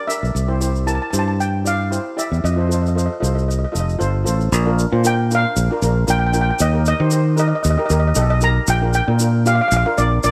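Calypso at 115 BPM in Bb major, carefree and sunny, where a shimmering lead steel pan carries the melody over an airy double-seconds pan accompaniment, both struck with medium rubber sticks, while a growly, up-front fingered electric bass enters at 0.2 seconds and a grainy, close tube shaker joins the lightly swung sixteenth-note feel through the chords C, F7, Bb, Eb and Bb6 in light reverb, cut from a longer piece.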